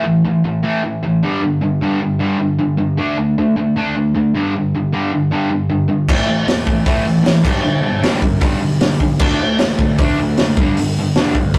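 Rowdy and rebellious, this punk rock excerpt at 154 BPM opens with a warm, double-tracked distorted electric guitar riff alone over chords on A, G and D, until a gritty, dark-cymbaled garage drum kit with a punchy kick and a growly fuzz bass sitting in the background crash in at 6.1 seconds, all caught in a rough rehearsal-room sound with tube saturation and moderate reverb.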